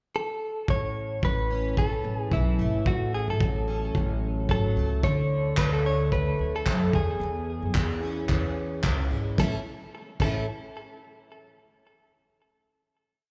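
A gently swung 16th-note lilt in 4/4 drives this short, sunny and carefree acoustic pop piece, which sounds like a live gig heard through a venue's PA, with club reverb. A clean, compressed electric guitar, recorded direct with a scooped tone, opens alone at 0.2 s with a pickup phrase, then carries a motif-based melody of song-like phrases, touched by slapback echo and delay. At 0.7 s the band joins. A double-tracked, full-bodied jumbo steel-string acoustic, plugged in and picked, plays alternating-bass fingerpicking with its own slapback. A woody, growly pizzicato upright bass holds a round, sustained line, while a cloth-damped, thuddy kit stomps and claps with a fat snare, tight kick, dark cymbals, handclaps and crash in a muffled, gritty, lo-fi small-room sound. The verse cycles through A, F#m, D and E6 before the piece settles on a final A chord at 9.4 s.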